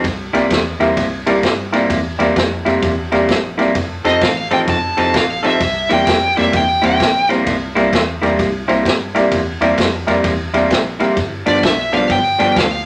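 Moderate studio reverb surrounds this gritty, laid-back electric blues shuffle, a fragment cut from a longer piece, swinging in 4/4 at 129 BPM in C mixolydian. Up front, an electric guitar through a small old amp carries the riff with a slightly broken-up, lo-fi, compressed tone, while a dark, foam-muted bass with a round, amped sound holds the low end. A vintage drum kit on kick, snare and ride has a tight kick, dusky cymbals and a saturated, rolled-off top. A bright upright piano comps with a woody, slightly detuned character, short sustain and audible action noise, and adds a fill at 10.2 s. A smooth, overdriven, picked lead guitar takes the melody from 4.1 s and returns at 11.5 s, as the harmony moves from C7 to F7, back to C7 and on to G7.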